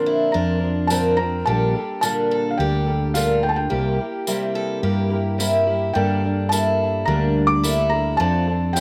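A straight 4/4 pulse at 107 BPM carries this reflective, haunting acoustic folk piece in G dorian, where a soft, felt-muted upright piano with audible action noise sings the melody over a dark, shimmering fingerpicked twelve-string guitar with finger squeak and slapback echo, boxy picked arpeggios from an acoustic archtop guitar also touched by slapback, a round, up-front fretless electric bass entering at 0.3 seconds, and a jingly, saturated tambourine joining at 0.9 seconds, the whole recorded outdoors with little reverb.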